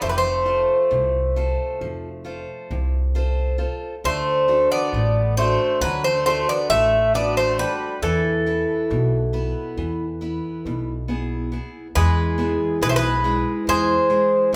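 A metallic, up-front Greek bouzouki carries the melody in this dark, reflective Greek folk excerpt, its double strings ringing over a second bouzouki playing a lower line, a boxy parlour-style picked steel-string acoustic guitar, and a woody pizzicato upright bass. The band plays live in one room at 136 BPM in 9/8, gradually speeding up throughout, with chords moving from F to D at 4.0 seconds and to E at 8.0 seconds. A wet, large studio reverb surrounds the group, and a new section begins at 11.9 seconds.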